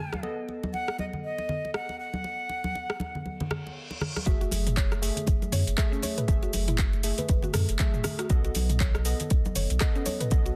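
Driving, hypnotic afro house at 119 BPM in F# dorian with a 16th-note swing, this excerpt opens with a breathy, bright flute melody bathed in tape echo over detuned analog key stabs under a filter sweep, overdriven deep house drums with metallic hats and handclaps, and close, dry congas. A reverse cymbal at 3.5 seconds then leads into a drop at 4.3 seconds, where a deep electronic kick, a round sine sub bass and a woody, mallet-like synth pluck arpeggio enter. The keys, bass and pluck pump against the sidechain in a dense, heavily limited mix with light digital reverb.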